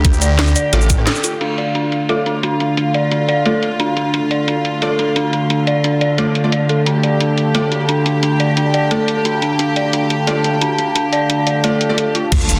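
This dense, heavily limited cut from a longer dark technical drum and bass track sits in a moderate digital room ambience, with a dark, futuristic mood and a straight 4/4 feel. It opens on a drop where a knocking electronic kick and a swirling, thick, saturated saw bass with phaser sit up front. Both fall away after a brief break and band accent, returning at 12.3 s with an electronic impact. Throughout, a soft-attack bowed string section holds floating sul tasto chords, while an eerie, inharmonic FM bell spins decaying arpeggios through chorus and digital delay, both pumping under sidechain. In the background, a bold, punchy orchestra-hit-like stab with its own reverb and delay joins the bell in long filter sweeps across the middle stretch. The layered drum kit adds a cracking snare, metallic hats, rim clicks, shaker and crash, all filtered, and from 4.2 s a lo-fi, nostalgic, warbling pad adds a hazy tape-like glow.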